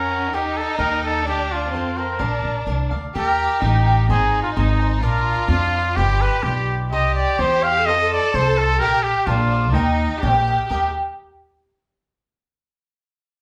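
A clear trumpet carries the romantic, proud melody of this mariachi passage, sung out up front with a soft attack, light vibrato and a classical poise. Beneath it, a rich chamber violin section bows a smooth, even second line, while a crisp, picked cavaquinho adds bright accompaniment and a woody, thumpy upright bass on gut strings anchors the low end. The whole band plays live together in one large studio room with a generous reverb, and the music moves into a new section at 3.1 s.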